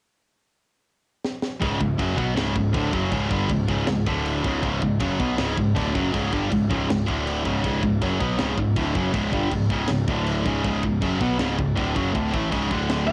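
Heavy metal at 159 BPM in 4/4, epic and heavy, cut from a longer piece and captured as a home recording on cassette with light reverb and small room ambience. A tight acoustic drum kit with a high-tuned snare and rolled-off top enters with a fill at 1.2 seconds, and at 1.6 seconds a stack of bright picked guitar riffs arrives: an up-front overdriven part, a double-tracked high-gain part in the background and a very quiet high-gain layer, all over a fuzzy overdriven picked bass, grinding mostly on C#5 with brief shifts to D5 before settling on C#m. At 13.1 seconds a warm, distorted high-gain lead guitar sounds a single up-front F#5.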